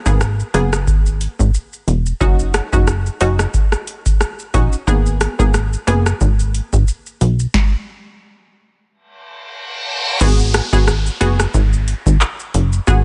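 Swung at 90 BPM in G# minor, this sultry, bouncy dancehall groove rides on a booming, overdriven analog drum machine with a deep kick, crisp snare and metallic hats roughened by 12-bit sampler grit, beneath a plucky, wave-folded analog bass up front and detuned, warbling chord stabs with sidechain pumping that drop out at 6.1 seconds ahead of a stop at 7.5 seconds, where a reverse cymbal and downlifter enter at 9.3 seconds, before the stabs return at 10.2 seconds in this dry, dark-topped mix.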